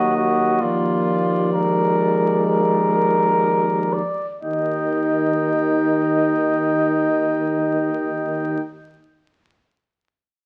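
In a straight 4/4 at 59-69 BPM that slows over the first 4.4 seconds, this solemn, heroic classical brass quintet excerpt moves from E-flat minor through Bb7/Eb and arrives on an E-flat major chord at 4.4 seconds. A clear, distant trumpet carries the melody while a punchy, up-front mellow trumpet with smooth top and light vibrato sings the second line. A soft-attack French horn and a background trombone with vibrato fill in the accompaniment over a warm, roomy bass trombone holding a low Eb, all heard through moderate large-studio reverb and the crackle of a very old 78 rpm record.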